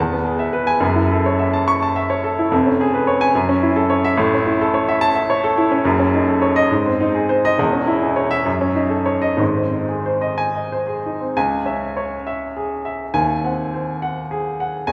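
Stormy and passionate, this romantic character piece for solo piano unfolds in 6/8 with free, rubato phrasing, drawn from a longer work. A clear, polished baby grand sits up front with a present, short-sustained tone, ranging from deep bass notes to bright upper registers, while a wet church reverb surrounds it with a long, resonant hall. Its harmony moves through restless minor and diminished colors, arriving on a new section at 11.4 seconds before the passage breaks off.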